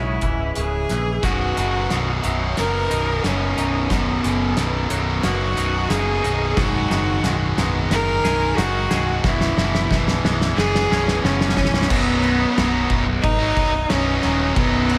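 A distant, bowed cello with vibrato sings the melody from the start, over bright, chorused arpeggios from a semi-hollow guitar in the background and a growly picked bass, in a dreamy, hopeful post-rock passage cut from a longer piece and soaked in church-like reverb. A loose indie drum kit with a fat snare, punchy kick and dark cymbals comes in at 0.2 s, and at 1.2 s an up-front, double-tracked overdriven guitar riff joins as a euphoric build-up with a drum fill begins. At 11.9 s the arpeggios stop and the harmony settles onto B major.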